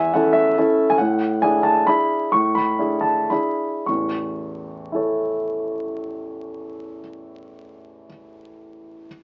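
Elegant and playful, this brief fragment of a classical piano waltz in A major moves in a rubato 3/4 between 98 and 146 BPM, easing down from 0.4 to 3.9 seconds as the harmony shifts from A to E7 over an A bass and settles back on A at 3.9 seconds. A solo concert grand carries the whole 9.1 seconds, intimate and up front with deep bass and audible action noise, across a span from A1 to C#6. The sound of a very old 78 rpm record, with its vinyl crackle, sits around the polished piano in a moderate studio reverb.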